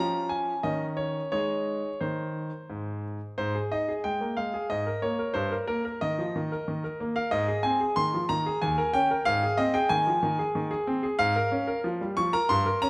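A bright grand piano, placed up front and natural in tone, carries this short solo cut from a longer classical-period sonatina in A-flat major. The mood is elegant and graceful, moving in 3/4 at around 92 BPM with a rubato feel that lets the time breathe. The piano spans a range from Eb2 up to Db6. Its opening phrase moves from Db/F through Dbsus2/Eb to settle on Ab. A longer passage begins at 3.4 seconds, turning through Bbm7/Ab, Eb7 and back to Ab before closing on Bbm. A wet recital hall reverb surrounds the instrument with a tail of about 1.8 seconds.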